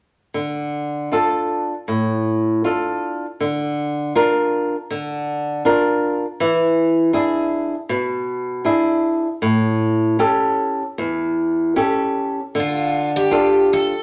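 Longing and passionate, this short cut from a longer fado-style ballad moves with a rubato feel in four. A fingerpicked flamenco guitar with fresh strings carries the accompaniment from 0.3 seconds, sitting up front and tracing a progression from Dm through Bb/D, E7 and A7 before returning to Dm at 12.6 seconds. At that point a picked twelve-string acoustic guitar takes the melody, its old strings giving a woody, full-bodied, shimmering tone with octave-doubled voicing, also placed up front. The two guitars overlap briefly before the flamenco guitar stops at 13.9 seconds, leaving the twelve-string to close the passage. A moderate reverb from a large studio gives the sound a roomy glow.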